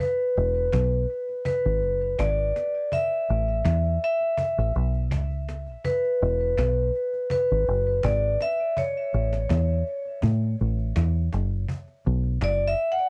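This is a roots reggae fragment cut from a longer piece, meditative and laid-back at 82 BPM in a straight 4/4. A vibraphone played with hard mallets carries the melody, its metallic, ringing tone sitting up front with its motor off, colored by cassette tape and a dub echo. Underneath, a deep dub fingered electric bass enters at 0.4 s with a round, dark, foam-muted sound, amped directly and placed prominently. A snappy cajon with snares keeps time under soft hands, compressed and saturated, with its own cassette tape grit, and it sits lower in the balance. The harmony moves between E and A before the vibraphone takes a solo at 11.7 s over a B5 chord. The home cassette recording is dry, with little reverb.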